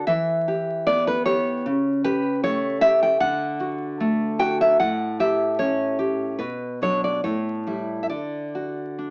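A fingerpicked nylon-string guitar plays alone and up front through this tender, romantic classical excerpt in a flowing rubato, its full-bodied tone softened by a cassette-tape character, a roomy studio reverb, vinyl crackle and a small-speaker, home-recorded sound, as a short chord progression settles onto its home chord near 8.1 seconds before the fragment ends at 9.1 seconds.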